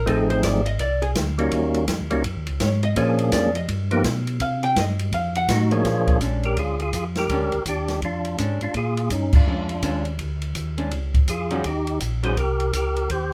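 Swung eighth notes in 4/4 drive this swinging, soulful soul jazz organ trio, cut from a longer piece. A mellow tonewheel organ carries the bass line, round and dark, with chorus vibrato and a slow rotary speaker. Over it a second tonewheel organ takes the melody, fat and lightly overdriven with third-harmonic percussion, also through a slow rotary speaker. A picked, clean hollow-body archtop guitar solos through the opening 5.8 seconds over altered dominant chords, then settles into accompaniment before dropping out at 12.4 seconds. An acoustic drum kit sits up front with dark cymbals, a medium-tuned snare and a boomy kick, and the whole band hits an accent at 9.3 seconds. A small room reverb gives the sound an intimate, close feel.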